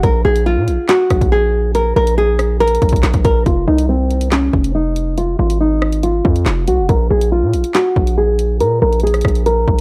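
Dark, tense drill hip hop in a half-time feel, cut from a longer piece, led by a fingerpicked classical nylon-string guitar with old strings, its woody tone softened by a low-pass filter and trailed by tape echo. Beneath it, a punchy, heavy 808-style bass with a sine body, a noise layer and a fast, decaying attack sits up front alongside an electronic drill kit of hard-clipped kick, snare, handclaps, rim clicks and warm hi-hats. The dry, gritty recording carries a digital ambience, and the music shifts into a new section at 3.5 seconds as the harmony moves from Bb5 to Fm and back to Bb5.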